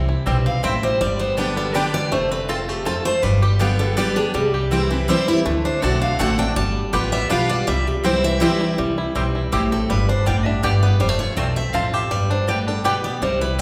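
A bright dreadnought acoustic guitar carries the melody from 0.5 seconds and takes a solo until 8.8 seconds, in a rustic, joyful bluegrass waltz in C major at 162 BPM, cut from a longer piece. Beneath it, a full-bodied jumbo guitar picks the up-front accompaniment, a twangy, percussive fingerpicked banjo plays arpeggios, a woody, double-strung mandolin adds stabs from 0.3 seconds, and a thumpy, dark upright bass with gut strings plays pizzicato. The whole band sits in the wet bloom of a recital hall, as the chords cycle through C, G and F with a turn through D7 and G7.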